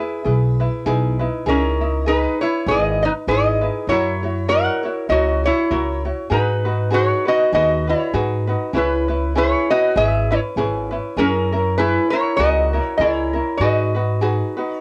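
A metallic, nasal lap resonator guitar played with fingerpicks and slide carries the melody from the start, joined at once by a light, fingerpicked ukulele, both sitting up front with the soft grain of cassette tape in this relaxed, languid Hawaiian piece at 99 BPM with a gentle swing. A woody, thumpy upright bass on gut strings enters at 0.3 seconds, plucked pizzicato with a dark, saturated tone beneath lush jazz-tinged changes moving from Emaj7 through C#m9, F#7 and G#m7. The homespun cassette recording, tuned slightly sharp to A4 = 444 Hz, sits in light reverb and is cut from a longer piece.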